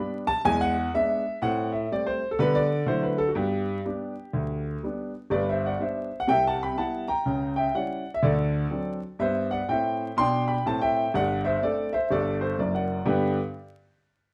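The rhythm swings in 4/4 at 124 BPM, with eighth notes pushed into a lilting 62% swing that gives this short stride piano excerpt a playful, bouncing character. A solo grand piano carries everything from 0.0 to 13.4 seconds in G major, ranging from a deep F#1 in the bass up to C6. Its tone is warm and boxy, with a long sustain, and it sits up front in the mix. The harmony moves through E7, Am7 and Dadd9 before settling on G, then drifts through Cmaj7, a passing C#dim and D7 in the longer middle stretch, and returns home to G at 13.1 seconds. A wet studio reverb and a vinyl crackle place the recording further back in the room, giving it the feel of an old jazz record.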